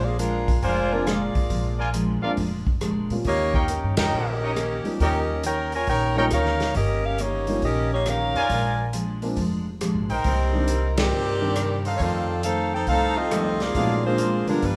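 A tight, close-miked saxophone section carries the melody with light vibrato over a full-bodied picked acoustic guitar in the background and a woody, growly pizzicato upright bass, joined almost at once by a dark, smooth big-band drum kit with a boomy kick, a present trumpet section punching out stabs and a vintage grand piano with short sustain, with band accents at 3.9 and 10.9 seconds in this brassy, energetic swing passage cut from a longer piece and set in a moderate large-studio reverb.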